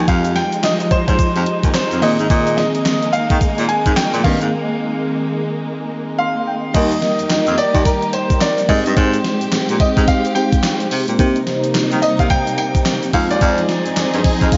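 A swung sixteenth-note groove at 108 BPM in 4/4 drives this bouncy, flirty new jack swing excerpt in E-flat major, cut from a longer piece. An up-front, overdriven 80s drum machine punches out a thumpy kick, gated-reverb snare, handclaps, hi-hat, tambourine and crash, while a grainy, very quiet tube shaker adds close, dry texture. A baritone saxophone carries the bass line with vibrato and a distant, roomy jazz tone, and a clear concert grand piano with analog delay plays the melody above. An FM electric piano layered with a soft pad supplies lush, detuned, chorused accompaniment, and a close studio string section holds bowed, expressive chords with portamento. The opening section moves from Fm9 to Bb9sus4, with a break at 4.5 seconds and an electric piano fill from 5.9 seconds, before the second section starts at 6.7 seconds on Eb and moves through Abmaj7, Cm7 and Fm7. The mix is dreamy and soaked in lush hall reverb, with the top end rolled off.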